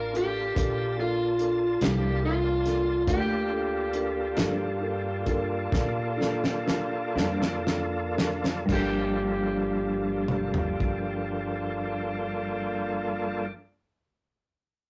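A rough rehearsal-room recording with warm saturation and a moderate studio ambience frames this smoky, mournful slow blues in G minor, taken from a longer piece. It moves in 12/8 at 38 to 48 BPM in dotted quarters, settling from a Gm7 chord and slowing down as the first section unfolds. An overdriven slide guitar, dark and played with fingerpicks, carries the melody over a thick, gritty overdriven tonewheel organ holding sustained chords through a slow rotary speaker and chorus vibrato. A mellow, slightly detuned upright piano sits in the background, while a pizzicato upright bass with gut strings gives a woody, thumpy low end. The warm soul drum kit, up front with a fat snare, tight kick and dark cymbals, plays a fill from 5.7 seconds and stops at 11.0 seconds. A clean, compressed electric guitar enters at 1.8 seconds with picked accompaniment colored by tremolo.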